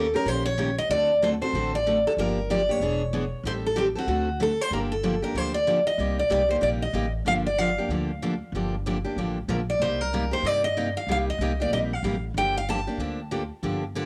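A swinging, virtuosic burst of acoustic string swing in minor opens with two bright, picked steel-string acoustic guitars up front, a fresh-stringed jumbo carrying the melody and a full-bodied dreadnought comping beneath it, both with a cassette-tape tint, over a woody, thumpy gut-string upright bass played pizzicato, all three sharing a small room's moderate reverb in this homespun cassette recording cut from a longer piece, with the melody guitar dropping out at 13.6 seconds.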